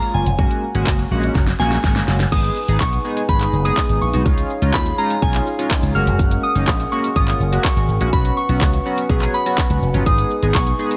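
Dance-pop in G# dorian at 124 BPM, this confident, energetic excerpt from a longer piece moves in a straight 4/4. A pure, FM-style synth bell carries the melody high above, touched with chorus and delay. Beneath it, a glossy, retro polysynth with pulse-width modulation and a filter sweep plays the chords with a sidechain pump, as does a bright, amped slap bass run through an envelope filter. The up-front, layered electronic kit brings a punchy kick, fat snare, hats, handclaps, shaker and crash, and its drum fill from 1.4 to 2.3 seconds leads into the second section. At 2.3 seconds a hollow stopped-flute pipe organ enters low in the mix with mellow sustained chords and a touch of chiff. The harmony cycles through F#add9, G#m, C#add9 and Bsus2, and the sound stays close and dry with little reverb.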